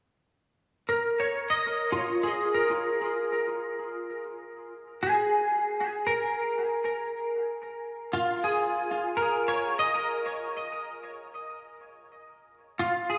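A clean electric guitar enters at 0.9 seconds with picked arpeggios over a Bbm7 chord, its bright, twangy tone compressed and set up front, thickened by ensemble chorus and analog delay. This spacious, melancholic ambient passage moves at a slow 58 BPM in straight 4/4, cut from a longer piece. A wet plate reverb and small room reverb give the echo-heavy mix a deep, lingering tail until the guitar stops at 13.2 seconds.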